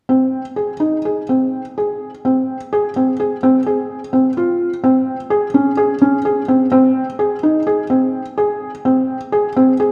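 Restless yet hopeful, this short contemporary instrumental excerpt in Ab major moves at 127 BPM in a straight 7/4, with a felt-muted upright piano playing soft, intimate arpeggios between C4 and Ab4, sitting up front with audible action noise inside a dark production bathed in a wet concert hall reverb.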